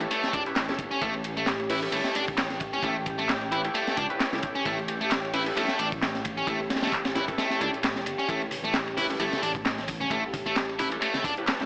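Funky and swaggering, this breakbeat excerpt struts at 132 BPM in 4/4 with a 55% swing on the sixteenths, sitting on an A7 chord. A crunchy acoustic breakbeat kit sits up front with a tight kick, high-tuned snare, dark cymbals, hi-hat and ride, its saturated, rolled-off sound joined by a punchy analog drum machine adding handclaps and hi-hat. A bright, distorted electric guitar riff carries the loudest part from 0.1 seconds, roughened by sampler grit and tape echo, while a bold, layered orchestra-hit-like synth stab punctuates with ring-modulated bite and its own echo. Beneath, a rumbling detuned saw bass beats in the low register, and a moody, evolving ambient pad breathes with chorus, reverb, grit and sidechain pumping. The kick drops out from 7.4 to 8.3 seconds, and soft-handed congas and bongos slip in at 8.5 seconds in the background, all framed by a small-room ambience and an AM-radio tone.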